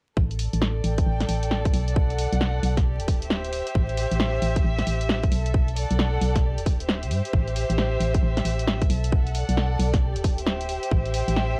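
UK garage in a two-step style, this bouncy, moody excerpt swings at 134 BPM in A minor, with a hollow, organ-like FM bass sitting up front and a tight, layered electronic kick. A punchy analog drum machine adds dry hi-hat and snare, while a close studio string section, bowed sul tasto with vibrato, pumps softly beneath as the chords cycle from A7sus4 through Bm7 and Dsus2 to Am7. The whole excerpt carries the grain of a home cassette recording with vinyl crackle, and the drums sit in a small room.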